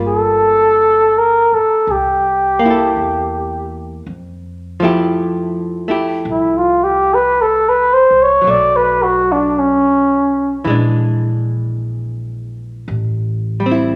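A lush, wet studio reverb surrounds this intimate jazz ballad excerpt, cut from a longer piece, giving the close, up-front playing a soft halo of space. A trumpet with a bucket mute carries the melody as a solo, its veiled, dark tone shaded with light vibrato and heard from close range. Beneath it, a clean, picked hollow-body archtop guitar, miked and amplified, supplies shadowy accompaniment, while an upright bass with gut strings adds woody, thumpy pizzicato support. The unhurried swing feel and the chord movement from Gm9 through Fmaj9 to Bb7#11 and Am7 lend the music a romantic glow. The trumpet falls silent at 10.7 seconds, leaving the guitar and bass to carry on to the close at 14.0 seconds.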